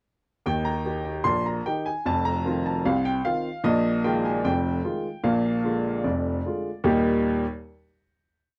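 Ragtime piano in a lively, playful mood, this short complete piece features a solo upright piano with a clear, woody, natural tone, placed up front, playing a single-line melody over a stride bass in straight 2/4. The piano spans a broad range from deep bass notes to bright upper ones, moving through a compact progression that settles on a final chord at 6.9 seconds. A moderate club reverb gives the sound a cozy sense of room.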